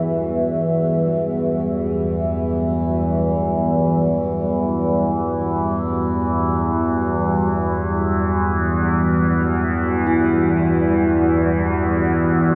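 A resonant drone with moving overtones opens this vast, ominous dark ambient piece, sitting up front in the low register from E2 to E3 with chorus, phaser and its own reverb. Alongside it from the start, a deep, moody pad of detuned sawtooth and sine voices with a sub octave holds sustained chords between G3 and F#5, its slow attack and long release blurring the harmony into an Emadd9 colour. In the background, a bronze singing bowl struck with a wooden striker adds a metallic, meditative ring around E4 to F#4, its slow beating giving the stillness a faint pulse. The music floats in free time through a single section lasting 12.6 seconds, cut from a longer piece. A wet cathedral reverb with a 5.7-second tail and a dark, warm production wrap the sound in a cavernous, shadowy space.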